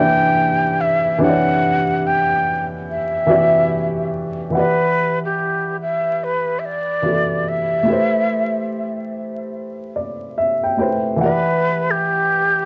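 An unsteady, breathy silver flute with vibrato and tongued notes carries the melody through a low-pass filter and analog delay, while a dark, woody upright piano colored by cassette tape and a low-pass filter comps beneath it over Em9 and Am9 chords, adding a fill from 9.5 to 11.2 seconds, giving this melancholic, hazy swung hip hop excerpt a lo-fi haze, set in a wet studio ambience under a layer of vinyl crackle.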